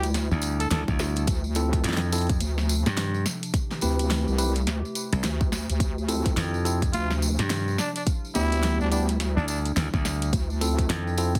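Heavily compressed, radio-like sound in a small room frames this swaggering, playful glitch hop excerpt at 106 BPM, with a swung 16th feel in D dorian: a saturated, detuned wobble bass and a bright, punchy slap bass sit up front over a layered electronic kick drum that enters at 0.9 s, a fat-snared pop drum kit and a jingly, close tambourine, while a dark, nostalgic tape-like pad with sidechain pumping warbles in the background, a bell-like tine electric piano adds gritty 12-bit stabs with dub echo from 1.6 s, and a raspy, growling trumpet with light vibrato returns for its melody at 6.9 s.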